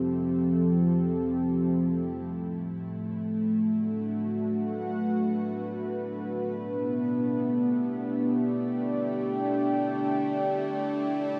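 Ambient music in free time, melancholic and serene, cut from a longer piece, where a mellow, chorused analog pad sits up front with sustained chords moving from Fadd9 through D6 and G to Dsus2 over a filter sweep, while a nasal, string-like drone with vibrato and its own reverb fades in far in the background, both sounding throughout the 11.4 seconds inside a vast, echoing cathedral reverb.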